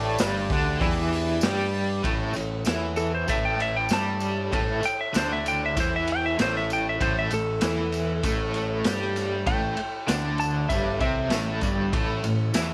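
A straight 4/4 beat at 97 BPM drives this swaggering, rowdy garage rock cut in A mixolydian, with a raw drum kit of boomy kick, medium-tuned snare, hi-hat and ride joining at 0.2 s in a pumping, gritty small room alongside a jingly tambourine set back in the mix. Up front, a bright, double-tracked overdriven semi-hollow guitar plays a tremolo-treated riff over a growling picked bass with its own overdrive, while a mellow vintage combo organ holds phaser-tinged chords in the background as the harmony moves from G5 to A at 2.0 s. At 3.0 s a dark, compressed lap steel enters with a clean fingerpicked slide melody that runs until 11.3 s.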